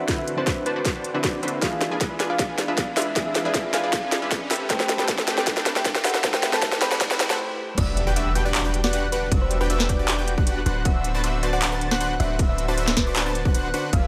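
A lush, emotional future bass passage at 156 BPM in a half-time feel opens on a build-up in E minor, where a round, tine-like thumb-piano synth pluck carries the melody over a soft, felt-muted upright piano with audible action noise, distant woody strings, punchy detuned supersaw stabs, a faint riser and a hard-clipped kick with a trap kit of sharp snare, crisp hats, handclaps and crash. At 7.8 seconds an impact marks the drop: the piano falls away, and a deep, boomy 808-style bass enters beneath airy, dreamy arpeggios from a detuned lead with vibrato. Sidechain pumping breathes through the pluck, piano, stabs, lead and bass, while the chords move from D13 and E7b9 through Am9 to Em9.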